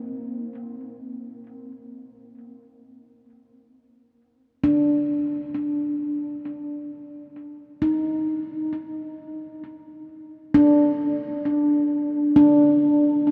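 A solo handpan rings out up front, its nitrided steel struck with the fingertips, giving a meditative voice that sits between Bb3 and Eb4 and carries a tape echo. This is ambient music in free time, warm and luminous in mood, tuned slightly sharp to A4 = 441 Hz. The handpan plays alone across the whole 13.3-second excerpt, drawn from a longer piece, with a passage that returns at 3.7 seconds. Its close tone has the boxy character of a small room, yet the recording wraps it in a huge, wet ambient reverb with a decay of 7.8 seconds. The result sounds both intimate and suspended, each ringing note hanging in a vast wash of space.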